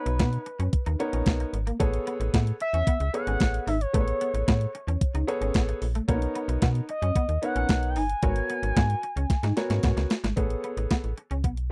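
Early-eighties boogie funk in a straight 4/4, danceable and slick, cut from a longer piece. Up front, a clean 12-bit drum machine with an electronic, sampler-style character lays down a thumpy kick, a medium-tuned snare and hi-hat. Alongside it sits a snappy FM bass with a metallic attack and tube saturation, digital yet mellow as its notes decay. A warm grand piano plays the accompaniment through the chords, while an electric guitar at the edge of break-up carries a twangy, picked riff treated with ensemble chorus. Over the top, an expressive portamento lead sings the melody in a smooth, warbling, dark, wave-folded sawtooth-and-sine voice with chorus and vibrato, until it drops out at 9.8 seconds. A drum fill from 9.3 seconds ushers in a brief new section at 10.4 seconds, and the whole is captured in a dry, close 1970s-style studio sound.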